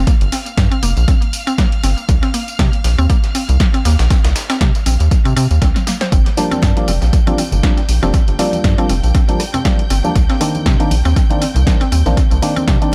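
A dry, echo-heavy mix carries this moody deep house excerpt, where an up-front, overdriven electronic kick and a punchy analog drum machine with dub echo play alongside a rubbery, nasal square bass with sidechain pumping, while a woody FM mallet-like synth pluck spins chorused arpeggios and a very quiet, gritty breakbeat sampler-style kit and a clear violin section sit in the background, until soft, low-tuned congas and a hollow, percussive organ stab with lush chorus join after a drum fill that ends at 6.1 seconds.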